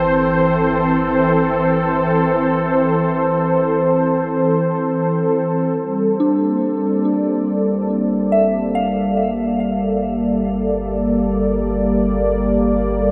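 A smooth, detuned analog pad sits up front, holding soft-edged sawtooth chords that shift from Am/G to Gmadd9 at 5.8 seconds in this melancholic, serene ambient piece in free time and G dorian. Underneath, a deep, rumbling drone on G1 adds an ominous, warbling vintage darkness. From 6.2 seconds a soft, pure FM bell traces mellow arpeggios with chorus, phaser and delay, all within a dreamy mix soaked in a huge 9.5-second reverb.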